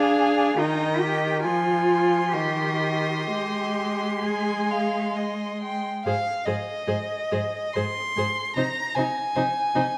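Warm and lyrical, this short passage from a slow romantic movement for string quartet unfolds in Ab major at 63-77 BPM in 3/4, breathing with a gentle rubato. The first violin carries the melody with a rich, smooth vibrato, sitting up front as a single bowed voice, while the second violin traces a second line beneath it with the same even, singing tone. The viola supplies the accompaniment, its bowed sound rich yet distant. The cello anchors the bass with expressive portamento and a warm vibrato, also set back in the mix. The harmony moves from Ddim through Eb, Fm and Eb6 to a settled Ab, and the music shifts into a new section at 6.1 seconds before arriving on Ab/C at 8.6 seconds. A moderate scoring-stage reverb gives the ensemble a gracious bloom, while a vinyl crackle lends the recording an aged patina.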